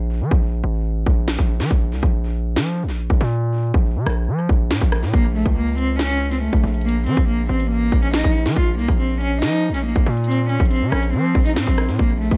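Cold and ominous, this half-time drill excerpt at 140 BPM opens on a distorted 808-style bass with a saturated, noise-layered sine tone, joined at 0.3 seconds by an electronic drum kit with a hard-clipped kick, sharp snare, crisp hats and rim clicks, all sitting up front with little reverb in an echo-heavy mix. At 5.1 seconds, as the harmony moves to B-flat minor, a single bowed cello enters with an airy, sul tasto tone and light vibrato, its intimate line softened by a low-pass filter and trailed by tape echo.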